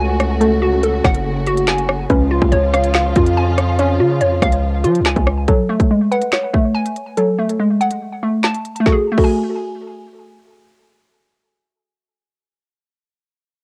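A home cassette recording in a booth with moderate ambience carries this menacing, cold half-time drill excerpt at 142 BPM in F# harmonic minor: lush bowed symphonic strings with vibrato hold sustained chords over F#madd9 and C#, while a hollow, bouncy, detuned square pluck runs up-front arpeggios through chorus, plate reverb and analog delay, a soft, warbling, dark round pluck adds a second line, a distorted, saturated 808 bass hits hard until both it and the strings stop at about 5.5 s, and the drum kit's hard-clipped kick, woody snare, crisp hats, rim clicks, finger snaps and crash push on, with the kick dropping out at 7.2 s.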